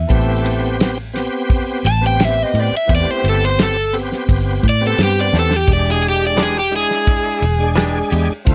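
An overdriven semi-hollow guitar leads this smoky, brooding soul blues in A minor at 86 BPM, its hollow-body tone sitting up front over a round, foam-muted fingered bass and a damped 70s drum kit with a fat snare, tight kick and dark ride cymbal. A shouting tonewheel organ with key click, slow rotary speaker and chorus vibrato fills the middle while a bright, close-miked horn section holds sustained chords in the background, moving from Am7 to E7#9 just after a drum fill at 5.3 seconds. A twangy, compressed clean guitar adds stabs from 6.4 seconds, all under light reverb in this short cut from a longer piece.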